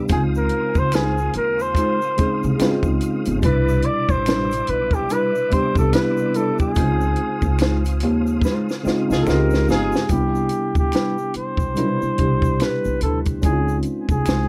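Swung sixteenths carry this smooth neo-soul R&B excerpt, where a dry cocktail kit with a punchy kick and high-tuned snare sits over a woody pizzicato upright bass, a worn, lightly overdriven tine electric piano accompanies on major-ninth chords, a percussive tonewheel organ with slow rotary and chorus vibrato holds chords in the background until 10.1 seconds, a dark, clean hollow-body guitar adds a second line from 0.9 seconds, tube shaker and finger snaps sit faintly behind, and distant horn-section stabs appear at 9.1 seconds, all beneath an up-front flugelhorn melody, clear and vintage, with vibrato, scooped notes and tape echo, under light reverb.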